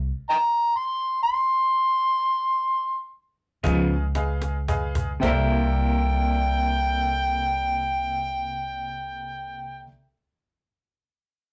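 Slow blues in a rollicking, gritty 12/8 at 36-45 BPM in C mixolydian, cut from a longer piece, opening on a stop and slowing down as a thumpy, woody pizzicato upright bass on gut strings sits up front and an amplified, overdriven harmonica takes a jazz-style solo from 0.3 s, full of tongue slaps, scooped notes and light vibrato. At 3.6 s the harmony arrives on Db9 with a bright, brilliant but worn grand piano, a clean picked electric guitar with tremolo, and a snappy, close cajon played with hard hands in a fill that ends at 5.2 s, the cajon dropping out at 5.5 s as the band settles onto C13. The rough rehearsal-room recording carries warm saturation and a moderate small-room reverb.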